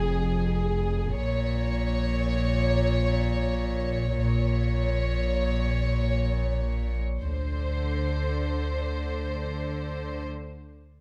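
A close, rich violin section carries the melody up front with light vibrato and a soft sul tasto touch, setting a tense, mysterious tone in this cinematic suspense cue cut from a longer piece. Beneath it, a woody, dark double bass section and a pure, floating cello section bow the bass lines, while a round, deep sine sub bass holds a mellow drone. A moderate stone-room reverb surrounds the strings as the harmony shifts from F minor to B-flat minor and then, at 7.2 seconds, to Csus2 over D.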